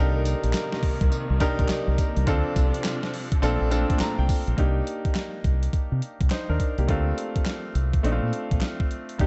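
A round, dark dub bass, a brilliant, intimate grand piano that plays a fill from 3.7 seconds, and lush, woody bowed strings that stop at 4.6 seconds open this bouncy new jack swing excerpt, joined at 0.3 seconds by a punchy, overdriven 8-bit drum machine with a thumpy kick and handclaps that drives it, all in a dry, dark mix.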